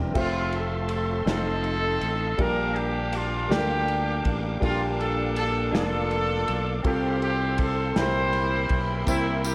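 Soulful and reverent, this slow gospel fragment in 6/8 sets a clear, roomy horn section on the melody over woody upright piano, both carrying slapback echo, with a reedy tonewheel organ holding chords through a fast rotary speaker in the background, growly fingered electric bass up front, a dark, smooth soul drum kit with a punchy kick, and a jingly tambourine arriving only at 9.1 s, the whole mix bathed in concert hall reverb for a big arena sound.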